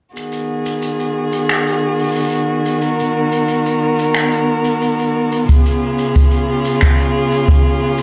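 A straight 4/4 pulse of shaker and finger snaps at 90 BPM carries this delicate, wistful folktronica excerpt in G# dorian, tuned to A4 = 436 Hz, where an up-front string quartet, one player per line, sustains expressive bowed chords with vibrato and portamento, moving from G#m7 to C#7 as a boomy acoustic kick drum joins from 5.5 to 7.6 seconds, all within a small room's moderate reverb.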